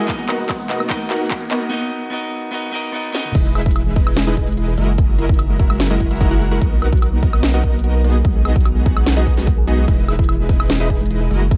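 Future bass in a half-time feel, bright and playful, this clip from a longer piece opens with a build-up. A slightly broken-up, picked electric guitar sits up front with sidechain pumping and digital delay until 3.3 seconds, while a breathy, very quiet pad holds sustained chords with chorus and phaser throughout. A mellow, tine-like FM pluck plays arpeggios in the background with chorus, pumping and delay, and a detuned sawtooth supersaw stab carries a punchy riff through a low-pass filter, also pumping and echoing. A background riser enters at 0.2 seconds, and the build brings a filter sweep, drum fills and a break before the drop, where a deep, saturated sine sub bass arrives at 3.4 seconds with sidechain pumping. A layered, overdriven electronic kick and a trap kit with a sharp snare, crisp hats, handclaps, toms, woodblock and crash cymbal drive the track over Bmaj7, Emaj7 and F#13 chords, all set in a dark, digital ambience.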